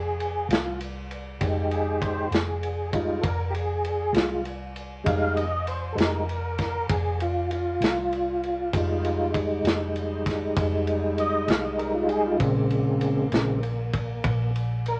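Soulful and brooding, this slow blues in 12/8 is cut from a longer piece and rests on a tonewheel organ that takes the lead for the whole passage with sustained chords. The organ sits up front with a clear, clean tone, shimmering through chorus vibrato and a slow rotary speaker. Beneath it, a vintage muted fingered electric bass holds down the low end with a round, foam-muted, amped sound. A crunchy breakbeat drum kit enters at 0.2 seconds with kick drum, ride cymbal and snare, its saturated, gritty character set against dark cymbals, a tight kick and a rolled-off top in a small-room, up-front sound. The harmony lingers on Fm7 before shifting to Bbm7 at 12.4 seconds, and a moderate club reverb gives the band a sense of space.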